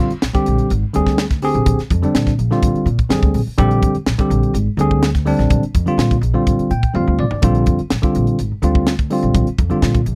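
An electric jazz fusion groove opens at once on a Bb9 chord, with a barky tine electric piano laying down bell-like, clean accompaniment up front while a pizzicato upright bass sounds woody and warm underneath. A crisp fusion drum kit joins at 0.1 seconds, its punchy kick, high-tuned snare, hi-hat and toms giving the straight 4/4 pulse at 125 BPM an airy, polished edge. The mood is slick and bright, sitting in Bb mixolydian. Around 6.5 seconds the electric piano slips in a short fill, and the drums add one of their own at 7.0 seconds. The sound is dry and close, in the manner of a 1970s studio, and this brief cut from a longer piece ends at 10.2 seconds.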